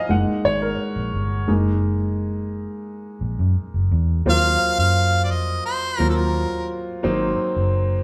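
Heard in a wet, large studio room where the band plays live together, this short fragment of lush 1970s-style soul at 86 BPM feels bittersweet and silky: an intimate grand piano with audible action noise and long sustain leads through Gb69 and Ebm69 harmonies over a dark, round, foam-muted electric bass up front, until a clear harmonica with light vibrato takes a pop-style solo melody from 4.3 s to 6.7 s before the music settles on Ab7.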